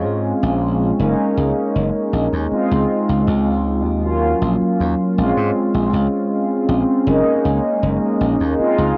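Worn, warbling cassette tape colours this recording, its pitch drifting while a wet recital hall reverb with a 1.5-second decay surrounds the sound. It is a faded, dreamy vaporwave fragment, cut from a longer piece, moving at an unhurried 79 BPM in a straight 4/4 and set in Gb lydian. Mellow synth brass carries the accompaniment up front, its round, detuned sawtooth tone sustained and dark, with a filter sweep, a fast attack, lush chorus and analog delay. Beneath it, a bright, punchy electric slap bass sits direct and amped in the low register. The harmony drifts through Bbm9, Gb69, Dbmaj9 and Ebm9 before circling back to Bbm9 and Gb69 over roughly nine seconds.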